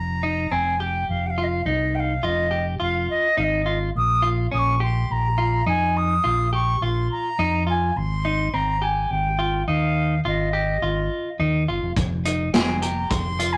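A rough, tube-saturated rehearsal-room recording in a small, wet-sounding room carries this driving, brooding progressive instrumental in F minor at 105 BPM in 7/4, where an airy, crisp wooden flute carries the melody over a round fingered electric bass and dark, compressed clean electric guitar arpeggios, until a punchy vintage drum kit with a rolled-off top enters at 12.0 s in this short cut from a longer piece.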